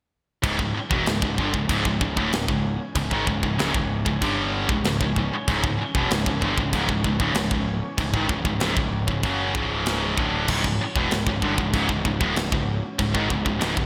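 From 0.4 s, this aggressive, relentless heavy metal passage, cut from a longer piece, brings in everything at once: a tight, up-front acoustic drum kit of kick, medium-tuned snare, bright china and crash cymbals, and gated reverb, together with two high-gain, distorted picked electric guitars that play a riff in the background. Beneath them, a punchy, fuzz-overdriven picked electric bass sits low in the mix, while a very quiet, detuned sawtooth analog pad with chorus holds smooth, mellow sustained chords. The 1980s-style digital production adds a lush hall reverb and small room ambience.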